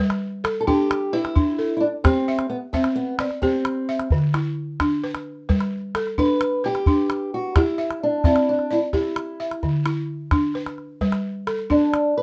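Moving in a straight 12/8 at 87 BPM, this joyful West African traditional excerpt in G major opens with a buzzing, woody balafon, struck with soft rubber mallets, playing arpeggios up front beside the small, close and dry percussion of a calabash. At 0.6 seconds a fingerpicked, ladder-braced acoustic guitar with dark, old strings enters to carry a boxy melody. The parts circle a repeating progression of G, C and Bmadd11/D, set in light reverb.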